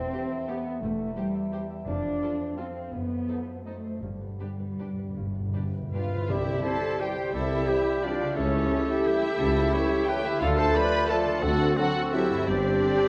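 In a rubato 3/4 at 150-192 BPM, this elegant, sweeping classical fragment in C major opens with ringing harp arpeggios beneath veiled, muted string sections, with violins carrying the melody and a distant second line over violas, cellos and double basses; a timpani fill at 4.0 seconds leads to a pure, expressive flute at 5.9 seconds, and from 6.3 seconds a clear clarinet, punchy bassoon and mellow tuba enter, followed shortly by a warm oboe and very quiet dark French horns and trombones holding sustained chords, the whole bathed in recital hall reverb and the warbly pitch drift of worn cassette tape.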